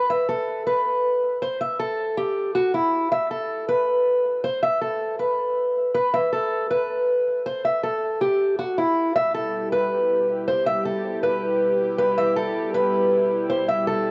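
Hard-hitting and menacing, this hip hop fragment in E minor moves at 159 BPM with a half-time feel. A fingerpicked acoustic archtop guitar carries the melody up front from 0.0 s, its finger squeaks audible through a low-pass filter and tape echo. At 9.3 s, as the harmony settles on E minor, a mellow analog pad of detuned sawtooth tones joins with a soft attack, long release and chorus, all in a small room with light reverb and a dry, gritty cassette grain until the cut at 14.1 s.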